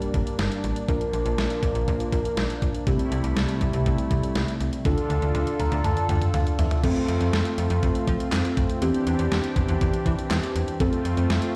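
A slap-like FM bass with a snappy, metallic attack drives this bright, nostalgic synth-pop excerpt, set against a clean 12-bit drum machine whose thumpy kick and medium-tuned snare sit up front with handclaps, hi-hat, toms and crash cymbal. Muted, felt-like synth keys with a soft, warbling vintage character and a brassy, detuned analog pad, both treated with chorus, fill out the harmony as the chords move from Gm through Bb, C6 and Dm before settling on F. A drum fill from 4.9 seconds and a keys fill from 5.3 seconds lead into the second section at 6.8 seconds, and the whole track sounds as if played on a big sound system in a bare room with large studio reverb.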